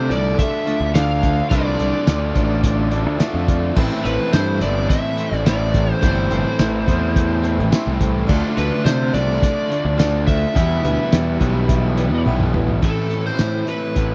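A dry, close 1970s-style studio sound frames this swaggering, gritty classic rock cut in A minor at 106 BPM, built on a punchy, up-front fuzz bass and a cloth-damped, thuddy drum kit with a fat snare, dark cymbals, tambourine and a fill at 12.3 seconds. A lead guitar through a small cranked amp sings the melody with overdrive and slapback echo, over a stack of riffing guitars: a double-tracked fuzz guitar, a bright, compressed overdriven electric in the background and a hollow-bodied overdriven semi-hollow. Beneath them, a shimmering, octave-doubled twelve-string acoustic is picked quietly, and a brilliant baby grand piano with audible action noise adds fills at 2.9 and 7.5 seconds before dropping out at 12.8 seconds as the chords move from Dm through Am and Em back to Am.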